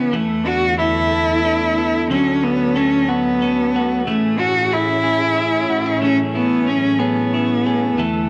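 A gentle six-eight sway with a straight feel carries this short, heartfelt pop ballad, a brief cut from a longer, romantic piece. Up front, a single bowed cello sings the melody with vibrato and a focused tone with a smooth top, its line trailed by tape echo. Beneath it, a clean, picked electric guitar with a warm, compressed sound plays the accompaniment, while a bright, twangy twelve-string electric guitar ripples arpeggios in the background. A close, woody studio string section holds lush bowed chords with vibrato, moving from E7sus4 to Dmaj7 to Amaj7. Light reverb and the soft grain of a home cassette recording give the whole an intimate, homespun feel.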